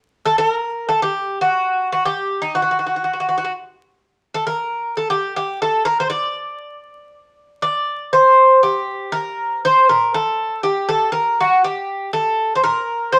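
A bright, metallic Greek bouzouki plays alone and up front, its picked double strings with some octave-doubled courses ringing through a wet studio reverb and a layer of vinyl crackle, in this dramatic, intense Greek folk fragment in straight 4/4 that starts near 119 BPM, speeds up throughout, and moves into a new section at 8.1 seconds.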